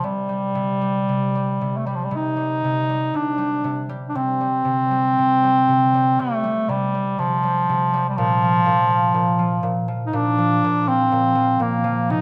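Rubato in 4/4 around 60 BPM, this mournful, haunting fragment of a Celtic slow air in C dorian sets a bright, vintage-toned bass clarinet up front on a classical-style solo melody over ringing, fingerpicked concert harp accompaniment, the harmony resting on C5 before moving to Bb5 at 8.2 seconds, all held in a moderate recital hall reverb.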